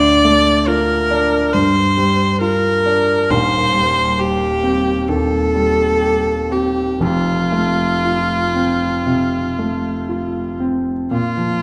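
A bowed viola and a grand piano begin together at the opening of this brief romantic classical duo, cut from a longer piece. The solo viola carries the melody with a clear, focused tone and vibrato, sitting close and up front. Beneath it, the piano supplies a dark, mellow accompaniment reaching from deep in the bass into the middle register, its smooth, vintage character also placed up front. The mood is tender, in 4/4 at a slow, rubato pace between 57 and 71 BPM, tuned to A4 = 438 Hz. The harmony moves from D minor through G minor seventh, C minor over E-flat and F before settling on a bare B-flat fifth at 11.1 seconds. A wet recital hall reverb with a 1.6-second decay surrounds both players until they stop at 11.6 seconds.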